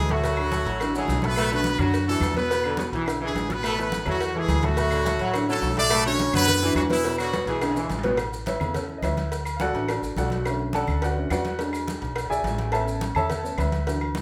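A bright, close-miked horn section leads this sunny, joyful salsa up front, with a tight, brilliant trombone section carrying a second line beneath it until both stop at 8.0 seconds. A clear, worn and slightly detuned upright piano with long sustain accompanies throughout and takes a solo from 8.2 seconds, supported by a dark, thumpy pizzicato upright bass on gut strings. In the background sit thick-skinned congas, a round low-tuned cowbell, ringing agogo bells and timbales, woody claves and grainy maracas, with a drum fill at 7.6 seconds and moderate large-studio reverb.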